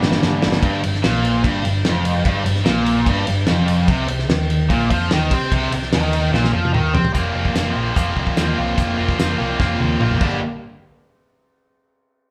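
Classic rock in G minor at 147 BPM, this swaggering, gritty excerpt is built on a bright, overdriven, double-tracked stack guitar riff out front, a round, punchy picked electric bass, and a damped 70s kit with a fat snare, tight kick and rolled-off top. Drum fills open the piece and return at 6.3 and 9.6 seconds, while the harmony moves through chords such as Gm, Bbsus24 and Fsus4. The band plays live together in one large studio with a wet reverb, and the parts cut off at about 10.4 seconds.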